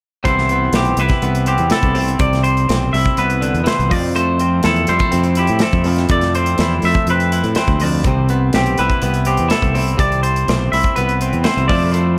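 Bright and intricate, this math rock and midwest emo excerpt moves at 123 BPM in a straight 4/4, cycling through Cmaj7 and Fmaj7 in C major. A compressed, twangy twelve-string electric guitar supplies the accompaniment beneath a clean electric guitar's picked arpeggios treated with analog delay, while an overdriven, up-front fingered bass growls low and a punchy acoustic studio kit of hi-hat, kick and medium-tuned snare, also touched with analog delay and rolled off at the top, drives things along. Studio reverb lends the whole mix an echo-heavy sense of space.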